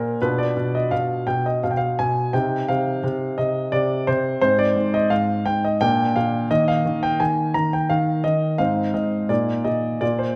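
Elegant and playful, this classical-period piano sonatina fragment moves in 3/4 with a supple rubato feel. A single grand piano carries it from the start to 10.4 s, its clear, polished tone sitting up front and intimate, with the action noise of the instrument plainly audible. A moderate recital-hall reverb gives the playing a sense of space as the harmony opens on a diminished chord and moves through C minor, Ab and Bb toward Eb.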